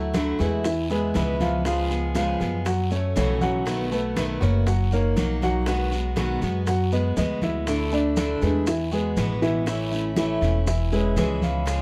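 A mellow, boxy grand piano plays arpeggios up front in this danceable Cuban son and guajira cut from a longer piece, over a woody pizzicato upright bass and a picked steel-string concert guitar playing accompaniment through chords such as C#7, F#m7 and B7. Just after the start, at 0.1 s, a percussion bed comes in behind them: bright congas played with soft hands, very quiet tight high-tuned bongos, a raspy guiro and distant, grainy maracas. The production is dark and warm with little reverb, giving the whole section a close, intimate feel.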